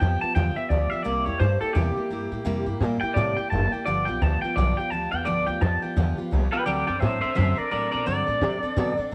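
Rowdy and rollicking, this short rockabilly excerpt moves at 171 BPM in 4/4, sitting in G mixolydian with a light swing on the eighth notes. An electric guitar through a small old amp carries the melody as a clean solo across the full 9.1 seconds, its tone bright, twangy and slightly broken-up, with a compressed, lo-fi edge, a subtle chorus shimmer and a touch of tape echo. Up front beside it, a pizzicato upright bass with gut strings gives a woody, dark and thumpy foundation. Underneath, a picked steel-string acoustic guitar fills in the accompaniment with a full-bodied dreadnought sound. The harmony moves through G7, C7 and back to G7 before landing on D7 at 6.7 seconds, all set in a small room with light reverb.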